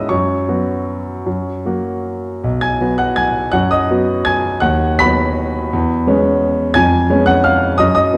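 A lilting waltz in three with a flexible, rubato feel opens this short classical excerpt, played by a solo grand piano across the full 8.2 seconds. The piano sounds smooth, vintage and up front, its warm tone spanning a broad register from deep bass to bright treble as the harmony moves from a suspended chord through its resolution toward a sequence of inverted and seventh chords. A wet recital-hall reverb and a dark production give the sparkling, elegant mood a soft glow.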